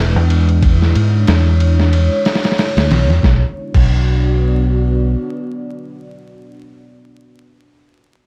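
Up-front fingered electric bass anchors this dark, brooding trip hop fragment with a swung 16th feel, joined at 0.3 s by a muffled, pitched-down sampler-style drum kit with thumpy kick, medium-tuned snare, hi-hat, ride and crash that drops out at 3.9 s, while a deep, warbling, detuned pad with chorus and its own reverb sustains chords moving from E7 to Bm beneath a dry, vinyl-crackled production.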